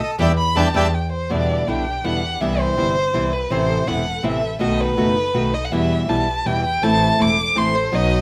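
In a moderately ambient studio room, this passionate, dramatic tango in a rubato 3/4 opens with a dark, reedy bandoneon melody that lasts just 0.9 s, as fingerpicked nylon-string guitar, a biting, earthy bowed double bass and bright string-section stabs in the background enter together on a band accent at 0.2 s, before an expressive bowed violin with vibrato and portamento takes a solo from 1.3 s over chords that move from Em7 through Cmaj7 and B7 in this passage cut from a longer piece.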